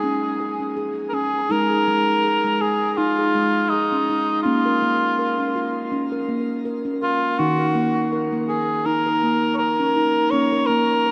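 Meditative and gentle, this short world excerpt pairs a cor anglais melody with light vibrato and classical poise against ringing, pure steel tongue drum arpeggios struck with rubber mallets, both up front and bathed in shimmer reverb and dub echo within a lush plate-reverb space, as the harmony moves through Bbm and Ebm.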